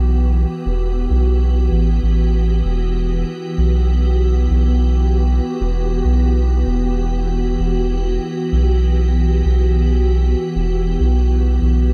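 Hazy and deep in a light reverb, this ambient dub excerpt in E minor moves at 97 BPM in a swung 4/4, with a soft, organ-like pad holding calm, full-bodied Emadd9 chords through ensemble chorus and its own reverb while a round, up-front dub sub bass sustains low beneath it for the full 11.9 seconds.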